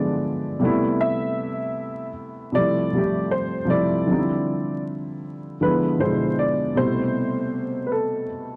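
A worn, woody upright piano carries the melody in its upper register, its slightly detuned tone sitting up front and softened by a low-pass filter. Beneath it, a felt-muted upright piano plays the accompaniment, thick with felt, mellow and intimate, and likewise filtered and close. This hazy, nostalgic hip hop fragment moves at an unhurried pace with a swung sixteenth-note feel in four. The harmony drifts through rich extended chords, opening on E7b9 before settling on Am9, then passing through Fmaj9 and Dm11 and returning to E7b9 and Am9. A light studio reverb sits over a dry, gritty hardware sound laced with vinyl crackle, lending the short passage a dusty, lived-in character.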